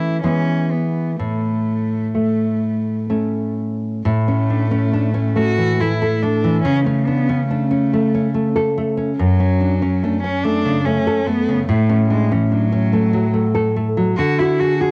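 A home cassette recording with a close, moderate booth ambience frames this lyrical, serene romantic duo in A major, where a warm, airy-bowed cello with light vibrato sings the melody over a full-bodied, fingerpicked nylon-string guitar that sits up front in a rubato 3/4 at about 62-73 BPM, the harmony drifting from E and A toward F#m and settling on D by 14.2 seconds in this fragment of a longer piece.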